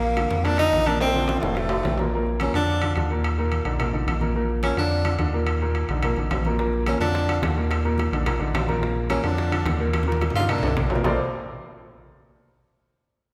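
A close-miked tenor saxophone leads this danceable, sophisticated Afro-Cuban jazz passage in Bb major at a brisk 215 BPM in straight 4/4, its vibrato and scooped notes carrying a solo from 2.1 seconds to 11.1 seconds. A natural-sounding baby grand piano sits up front with the horn, comping through chords that move from Bbmaj9 and F7 to an alternation of Bb and Eb5 before settling on Ebmaj7 and back to Bbmaj9. Beneath them, a rubbery, hollow synth bass built on a square wave with a dark, bouncy pluck anchors the low end. Ringing, vintage-toned timbales push forward over low-tuned congas and round, soft-handed bongos in the background, with the bongos dropping out at 2.0 seconds and returning at 6.6 seconds, and drum fills marking the turnarounds. A lush scoring-stage reverb in a church or concert hall space gives the short fragment, cut from a longer piece, a roomy, spacious glow.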